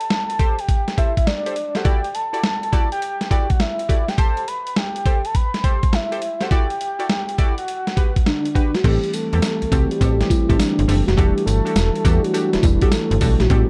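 A soft, round octave-layered synth lead with chorus, tremolo and vibrato opens this bouncy, punchy new jack swing piece in A dorian at 103 BPM with a swung 16th-note feel, played over a gritty, compressed, up-front sampler-style drum kit of thumpy kick, snare, hi-hat, tambourine and crash. Mellow, funky sawtooth polysynth stabs with chorus and a filter sweep join at 0.4 seconds, and a clean, bell-like tine electric piano and a snappy, metallic slap-style FM bass arrive at 8.8 seconds, all in a dark, dry production.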